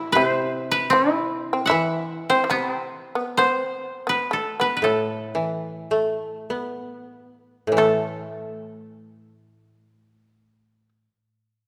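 A moderate scoring-stage reverb surrounds this brief fragment of Japanese traditional music, still and solitary in A kumoi, moving in a rubato 4/4 between 46 and 79 BPM and slowing from 0.2 to 7.8 seconds before a new section begins. Up front, a dry, woody koto played with fingerpicks carries the melody, while a second koto supports it with a low accompaniment. Alongside them, a fretless shamisen plucked with a plectrum adds a buzzing, percussive second line.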